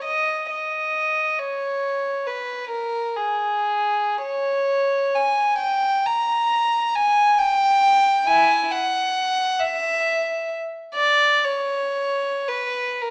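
Mournful and yearning, this brief classical fragment for unaccompanied violin unfolds in a free, rubato 6/8, the solo line played sul tasto with a soft attack and a pure, floating tone sitting up front in a moderate recital-hall reverb, all heard through a small-speaker sound.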